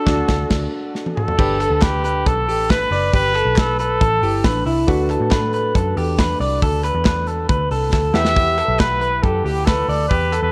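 A smooth-topped trumpet with vibrato leads this breezy, youthful indie pop excerpt up front, carrying a pop-style melody and returning at 8.2 seconds after a pause. The opening bars hit a band accent, with a keys fill and a drum fill before the warm electric guitar enters at 1.4 seconds with slightly broken-up, compressed, lo-fi arpeggios through a small old amp. Underneath, round, evolving analog keys built from pulse and sawtooth waves sit in the background with a filter sweep and chorus, while a dark, foam-muted picked bass adds punch through tube saturation. A polished, airy studio drum kit with a punchy kick and medium-tuned snare drives the straight pulse in 4/4, dressed with very quiet, crisp group handclaps, and a dry, close-miked vibraphone rings out a brief metallic second line from 4.2 seconds. The harmony moves from D through Gadd9 and D6 to Emadd9, all inside a small, lightly reverberant room on worn, warbling cassette tape with a drifting pitch that gives the jangly track a worn tint.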